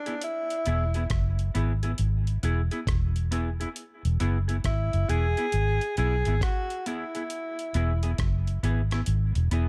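A dry excerpt of laid-back roots reggae at 68 BPM in E major, where a punchy tenor saxophone with light vibrato and tape echo carries the melody until 8.2 seconds over a dark semi-hollow electric guitar with subtle chorus, a gritty, compressed sampler-style drum kit of hi-hat, thumpy kick and rim click, and a round, foam-muted fingered electric bass sitting up front from 0.7 seconds.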